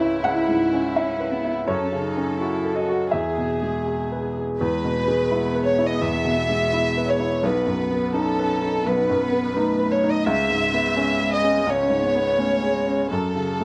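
Rubato at 84 BPM in 4/4, this hopeful, intimate neoclassical piece in E major moves through C#m7, F#m and E before settling on B and returning to C#m7, with a new section arriving at 4.6 seconds. A close chamber violin section carries the melody up front, bowed sul tasto with light vibrato and a smooth top. A felt-muted upright piano of soft, mellow tone accompanies alongside it. Behind them, a single cello plays a second line with a gentle attack, all set in light reverb within a dark, warm production.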